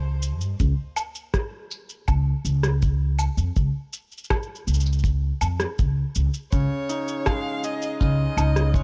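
Hopeful and delicate, this short folktronica passage moves at 81 BPM in a straight 4/4, set in Db major within a small room of dark, warm production. A pizzicato upright bass on gut strings carries the low end throughout, woody and thumpy with a touch of tube saturation, sitting up front between Db2 and G2. A rich, bowed violin sounds only briefly at the very start, then returns at 6.5 seconds with focused vibrato and a smooth top, its line ranging from C5 to F5 through a delay. An electronic shaker, woodblock and rim click, re-recorded in the small room, enter at 0.2 seconds, joined by a dry, tight acoustic kick drum held up front. At 6.5 seconds a bright, shimmering hammered dulcimer adds ringing arpeggios from Db3 to Ab4 as the harmony settles onto Dbsus2.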